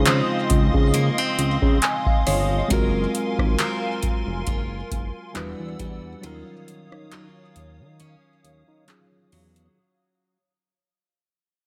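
Contemporary R&B at a slow 68 BPM in 4/4, with a gentle swing on the sixteenths, this romantic, tender fragment is cut from a longer piece and fades out across its roughly ten seconds. A booming analog drum machine sits up front with a deep kick, metallic hi-hat, handclaps and rim clicks, while a smooth sawtooth-and-square synth bass with a touch of vibrato anchors the low end. A worn, slightly out-of-tune tine electric piano supplies mellow accompaniment and slips in a fill between 1.4 and 2.7 seconds, as a bright, full-bodied steel-string acoustic guitar picks arpeggios through a digital delay, finger squeaks audible. Above them, a hollow, flute-like pad with ensemble chorus holds warbling, detuned sustained chords. The harmony drifts through lush ninth chords from Dbmaj9 to Gbmaj9#11, Em9 and Ebm9, settling into a break from 6.2 seconds as the fade continues, all bathed in a digital ambience.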